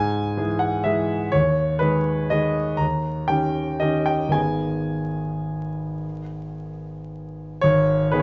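A clear, polished grand piano plays alone from the first moment in a short excerpt of a wistful, bittersweet classical waltz in 3/4 with a rubato feel, its up-front tone caught by close, detailed microphones with light reverb and a vinyl crackle as the harmony moves from a rootless C#m through G#m/D# and D#7 to settle on G#m at 4.4 seconds.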